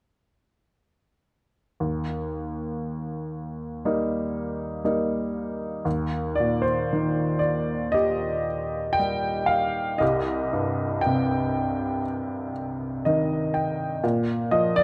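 Rubato and uneven, the pulse drifts around 59 BPM in 4/4 as a solo upright piano plays a lyrical, peaceful classical passage in Eb major, cut from a longer piece and tuned slightly above standard pitch. The piano sounds brilliant yet worn and woody, slightly detuned and intimate, sitting up front with long sustain and audible action noise, set in light reverb within a dark, warm production. Entering at 1.8 seconds on Eb, it moves through C minor and a brief fill at 12.6 seconds before settling on Bb.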